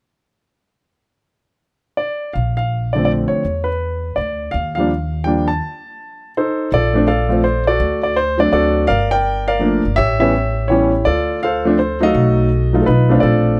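A natural, up-front baby grand piano carries the melody in this sophisticated jazz excerpt, entering at 2.0 seconds with a glowing tone and swinging in a lilting three-beat waltz feel. A woody upright bass, plucked on steel strings, joins at 2.4 seconds and roots the lush harmony of rich major-ninth and seventh chords. A brief stop at 5.6 seconds breaks the flow before the music presses on, all set in a light reverb that keeps the mood warm.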